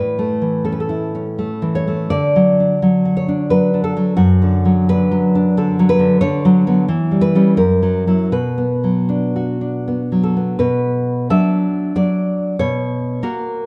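A fingerpicked nylon-string guitar plays alone from the start, full-bodied and up front, in a tender, sunny romantic piece in 3/4 that moves with a rubato feel between 76 and 96 BPM. It opens in D major and turns to B minor at 6.2 s, reaching a new section at 10.6 s in this short fragment of a longer work. A dark, warm production and a moderate concert-hall reverb surround the guitar's deep classical tone.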